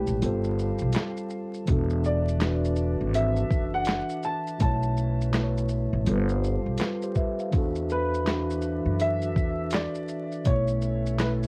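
A dark upright piano with audible action noise carries the melody through this dreamy, mellow lo-fi hip hop excerpt at 82 BPM with a swung 16th-note feel, over a clean tine electric piano heard through its built-in speakers, a woody pizzicato upright bass on gut strings, a gritty, compressed sampler-style soul kit of handclaps, hi-hat, shaker, snare and a thumpy kick that drops out from 0.2 to 1.7 seconds, and an airy, hollow small flute group holding vibrato-laced chords in the background, all drifting through ninth suspended-fourth harmonies with light reverb, cassette tape grit and vinyl crackle for a homespun, intimate sound.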